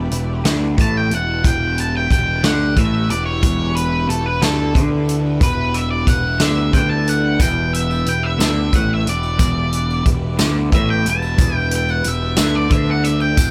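Psychedelic rock in E minor at a slow 60 BPM in 6/8, mysterious and trippy, where a dark, distorted octave-fuzz lead guitar with tape echo takes a solo from 0.8 seconds over a slightly broken-up rhythm guitar riff through a rotary speaker, a round, overdriven fuzz bass, a punchy vintage drum kit in a small room, a shimmering string machine of violins in the background, and a distant, jingly tambourine entering at 7.4 seconds.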